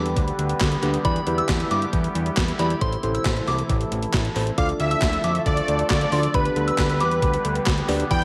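Cool and driving, this synth-pop excerpt moves in a straight 4/4 over a chord progression that starts on G/D and passes through Em7, Am and Dm. A gated 80s digital drum machine sits up front with a thumpy kick, gated reverb snare, hi-hat and handclaps, its sampler-style sound touched with tape echo. Beneath it, a fat analog bass with a detuned sawtooth and square-wave bite and a filter pluck anchors the low end, while a mellow tine electric piano with tape echo and a sweeping resonant pad with a nasal, chorused filter swell fill out the harmony. At 1.0 seconds a soft FM synth bell enters high above, its pure, vintage tone warbling through chorus, phaser and tape echo. A thick unison lead arrives at 4.6 seconds to carry the melody, its detuned sawtooth and triangle layers adding a sub octave, ring modulation and vibrato. The mix is echo-heavy with light reverb.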